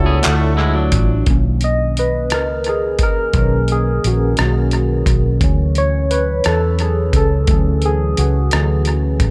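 A slow six-eight R&B groove at 58 BPM, straight and unhurried, sets a tender, warm mood in this short excerpt cut from a longer piece. A dusty, sampler-style drum kit with a thumpy kick, hi-hat, rim click and handclaps sits up front, its gritty, compressed sound touched with tape echo, while a vintage muted fingered electric bass keeps the low end dark, round and punchy. Clear horn stabs with light vibrato open the piece, ending at 0.9 s, and an electric guitar at the edge of break-up adds a twangy second line with a warbly pitch drift before dropping out at 1.2 s. From 1.3 s the barky tine electric piano, lightly overdriven through a combo amp and colored by phaser and tape echo, takes a bright solo that runs to the end. The harmony moves from Dmaj9 to Bmaj9 and back to Dmaj9 at 5.4 s, all bathed in an echo-heavy digital ambience.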